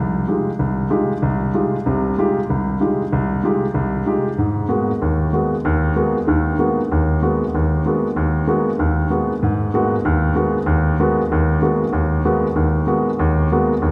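A brisk swing at 190 BPM in 4/4 drives this short jazz passage, cut from a longer piece, with a lilting triplet-leaning eighth-note feel. A lone grand piano carries everything, its tone warm and intimate, natural and placed up front, with the action noise of the instrument clearly audible. The harmony opens on Fm9 and moves to Abm9 at 4.4 seconds, and from 9.4 seconds the music settles into G# minor as a new section begins. The piano ranges from C2 up to G4, in keeping with the cool, searching mood. A long, wet concert-hall reverb, lingering about 2.6 seconds, surrounds the piano with a spacious, resonant halo.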